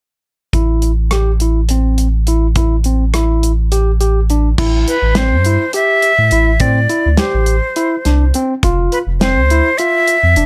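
A breathy, bright metal flute with vibrato and a chiffy attack takes the melody from 4.9 s over a barky, clean tine electric piano playing arpeggios in plate reverb, a deep, round sub bass and a punchy, rolled-off studio drum kit with crash, hi-hat, rim click and snare, in this brooding, tense progressive instrumental in 7/8 at 208 BPM in A minor, cut from a longer piece, moving from Am7 to F5 at 8.6 s.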